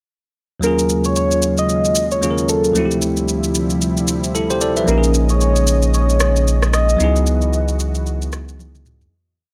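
A late-night, soulful amapiano piece at 113 BPM in 4/4, with a swung sixteenth-note feel and light reverb over a dry, gritty hardware sound. From 0.6 seconds a round, gentle FM synth lead carries a motif-based melody of call phrases, its keys-like, decaying notes treated with chorus, vibrato and tape echo, while a bell-like tine electric piano plays syncopated rootless chords with grace notes and short fills. Beneath them a detuned sawtooth analog pad, softened with chorus and touched by ring modulation, holds sustained chords through Ebm11, Dm11, Bbm7 and Dbm11. The electronic drum kit, which includes toms, keeps a steady shaker, soft kick and syncopated rim click, with a fill at the close. A deep, round sine sub bass enters at 4.9 seconds with sustained notes up front, and the whole breakdown fades out from 7.0 seconds.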